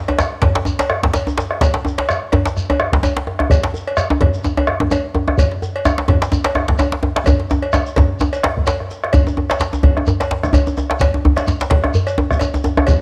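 West African traditional drum ensemble music, driving and earthy, with a swung sixteenth-note feel across its 13 seconds, cut from a longer piece. A round, vintage, band-limited bombo and a deep, hand-struck djembe sit up front, while a second, tight and cracking djembe plays in the background, joined by a metallic cowbell and a grainy, mellow shekere. A drum fill from 7.3 to 9.1 seconds leads into a new section, all carried by light studio reverb and the character of a home recording on cassette.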